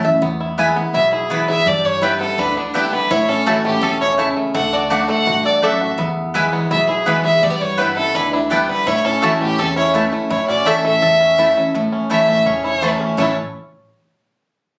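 A straight 4/4 pulse at 167 BPM drives this virtuosic, rustic bluegrass excerpt in A mixolydian, where a clear, focused bowed fiddle with light vibrato carries the melody up front from 0.9 s over picked double-string mandolin stabs, twangy, percussive fingerpicked banjo arpeggios, a full-bodied dreadnought steel-string guitar with fresh strings, a nasal, metallic slide resonator guitar playing a second line in the background until 11.6 s, and a thumpy, woody pizzicato upright bass, the whole band captured by a phone in the room with club reverb and compression.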